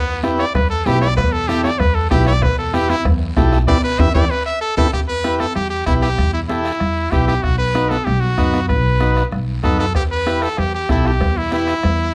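A straight 4/4 cumbia groove at 191 BPM in E minor drives this danceable, passionate passage, where a brilliant, punchy trumpet carries the melody up front with vibrato, opening as a solo that a band accent and drum fill close at 4.9 seconds, over a growly, woody pizzicato upright bass, a buzzy, overdriven vintage combo organ, a soft-beater bombo and high-tuned congas in the background, a very quiet raspy guiro, and ringing cowbell and timbales that play until 4.8 seconds and return at 10.0 seconds, set in a dark production with light reverb.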